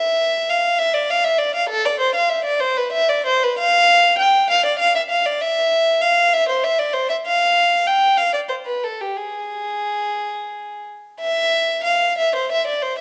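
A rubato 6/8 pulse of 57-67 BPM in dotted quarters carries this grave, solemn fragment of a baroque-style suite movement, where a lone violin with a rich, reedy gut-string tone in period style, bowed close and up front between G4 and G5, plays through the moderate reverb of a recital hall for 13.0 seconds.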